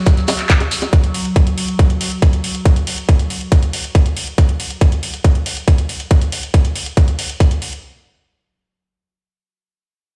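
Psychedelic trance with an alien, hypnotic mood, heard in a short cut from a longer piece in a straight 4/4 feel. An evolving wavetable pad holds sustained chords around F#3 for the first 4.4 seconds, its unison triangle tone morphing under a slow attack and long release, colored by chorus, phaser, built-in reverb and sidechain pumping. The electronic kick drum sits up front, tight and layered, running from 0.1 to 7.5 seconds. Around it, a produced drum kit brings bongos, handclaps and metallic hi-hats, while a grainy, mellow shekere sounds close and dry in the background only until 0.9 seconds. The drums carry a small-room character, and the whole mix plays as if through a big sound system in a bare stone room, giving it a reverberant stone-room ambience.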